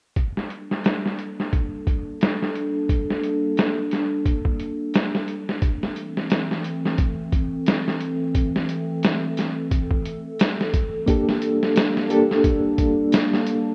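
Swung 16ths at 88 BPM drive this hypnotic, brooding trip hop fragment in G dorian, where a muffled, pitched-down sampler-style kit with a thumpy kick, medium-tuned snare and low-pass-filtered hats sits up front from 0.2 s, alongside a dark, warbling, lo-fi tape-like pad that holds slow-attack Gmadd9 and Am chords with chorus and built-in reverb, and at 11.1 s a reedy, clean electric piano enters with fast tremolo and tape echo, all set in a lush hall reverb within a rough, muted home-demo mix cut from a longer piece.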